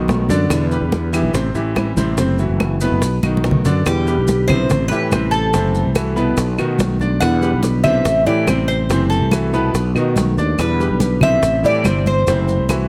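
A bright, metallic Cuban tres with double strings carries the melody up front from 3.9 seconds, its picked lines ringing between G4 and F#5. This is a danceable, warm slice of Cuban son and guajira at 143 BPM in 4/4 with a straight feel, set in E minor and cut from a longer piece. Beneath it, a growly, amped fretless electric bass sits prominently. A clear baby grand piano plays arpeggios with audible action noise, and a small, fingerpicked nylon-string guitar adds accompaniment in the background. Damped, high-tuned congas played with soft hands, tight bongos, woody band-limited claves and grainy, saturated maracas fill out the percussion, with a drum fill from 3.2 seconds just before the tres enters. The harmony circles through Em7, Am7, F#m7b5 and B7, with one Em9 in place of Em7, captured by close, detailed microphones with light reverb.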